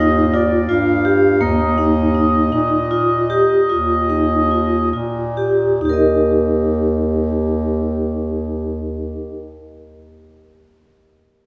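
A long, wet church reverb fills the space, lending this short, shimmering, restless contemporary instrumental a resonant, hall-like glow in an uneven 11/8 metre with a straight feel. A vibraphone played with medium mallets sits up front, spinning metallic, ringing arpeggios with a fast motor vibrato until 9.4 seconds. Beneath it, a bass clarinet holds the low line with a soft attack and a warm, classical-style tone, also close to the listener. A mellow accordion carries the melody in a narrow upper register for the opening 4.9 seconds, its reedy, full voice close-miked and dry, with slow beating and a warm tone-chamber colour. The opening passage gradually slows before the music settles from an Ebadd9 colour onto a plain Eb chord at 5.8 seconds, where a new section begins, and the piece is cut from a longer work.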